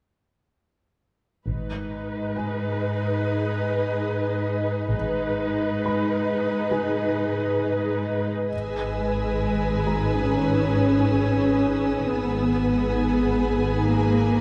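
Tense and mysterious, this slow cinematic passage in G# minor at 68 BPM opens at 1.5 s with up-front cello and double bass sections anchoring a close, portamento-tinged viola section, joined by an ethereal, chorused pad and a thick-felt upright piano whose mellow action noise murmurs in the background, before three violin lines, a focused melody, a soft second line and a faint high texture, enter at 8.5 s, all bathed in a moderate concert hall reverb within a dark, warm production.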